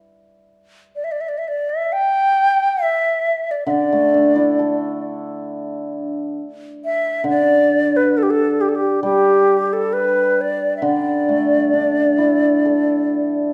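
Set in a dark, warm production with the wet bloom of a recital hall, this festive, pastoral excerpt of Chinese traditional music moves at 66 BPM in 4/4 in the D zhi mode. A bright, airy bamboo xiao enters at 1.0 seconds to carry the melody up front with soft attacks and vibrato. A shimmering, ringing hammered dulcimer joins at 3.7 seconds to accompany it up front with warm, acoustic resonance.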